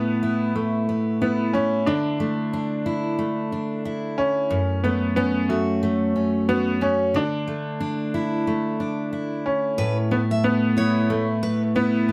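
Lightly reverberant, this sunny, carefree acoustic pop fragment sets a bright, woody, slightly detuned upright piano melody up front over a full-bodied picked dreadnought steel-string guitar accompaniment, with a gently swung feel across mostly suspended chords and a second picked guitar adding high arpeggios from 9.8 to 11.6 seconds.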